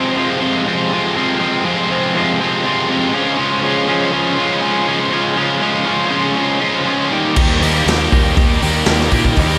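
Swaggering and brooding, this classic rock excerpt moves at 121 BPM in a straight 4/4, opening with a bright, double-tracked distorted electric guitar riff, touched with overdrive and slapback echo, that rides a chord progression of Fm, Db and Eb. At 7.4 seconds a fuzzy, punchy picked electric bass and a gritty, roomy garage drum kit with a punchy kick, medium-tuned snare, hi-hat and crash cymbal join in. A moderate concert hall reverb gives the whole a big arena sound.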